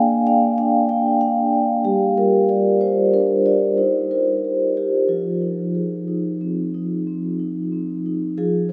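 A solo vibraphone played with soft mallets sits up front in this short, flowing contemporary classical passage, its mellow, ringing metallic tone shimmering with a slow motor vibrato. The hypnotic, rubato phrasing moves in 5/4 through chords from Bb7 to Ebadd9 and Fm7, spanning F3 to Ab5. A wet cathedral reverb with a long 4.5-second tail surrounds every note, and the passage is cut from a longer piece.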